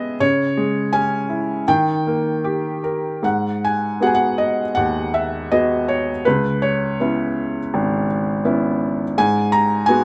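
A felt-muted upright piano plays alone in this melancholic, reflective classical fragment, its soft, intimate tone sitting up front and close to the listener. The solo moves at about 80 BPM in 4/4 with a free, rubato feel, opening on C#m and D# before settling into G# minor at 3.2 s, where G#m7 and C#m7 chords carry it through to 10.0 s. Light reverb and detailed miking capture the thin felt character and the instrument's range from G#1 to A#5.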